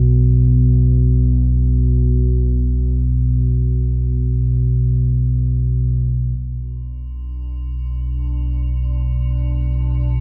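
This dark ambient drone piece, cut from a longer work, unfolds in free time in B minor with an ominous, dark mood. A deep, rumbling drone sits up front from the start, its detuned sawtooth and triangle tones giving it a nasal edge as it sustains with a slow attack and long release through built-in reverb. Over the first 6.4 seconds a filter sweep shapes this drone, and the harmony settles onto B minor once that opening stretch gives way to the second section. At 7.2 seconds a faint metallic, inharmonic drone appears, its eerie, warbling FM tone wave-folded and thickened with chorus and reverb for a vintage character. The production is dark and warm, with only light room reverb surrounding the sustained layers.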